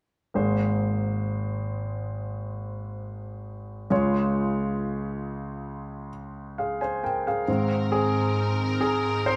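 An intimate concert grand piano opens this slow, emotional pop excerpt in Ab major at 67 BPM. Its deep bass, long sustain and audible action noise sit up front as it accompanies a hopeful Abadd9 to Db progression. At 7.5 s the piano takes a solo as a rich, bowed string section enters with sustained chords, its smooth-topped vibrato set in a wet room sound where the players perform together.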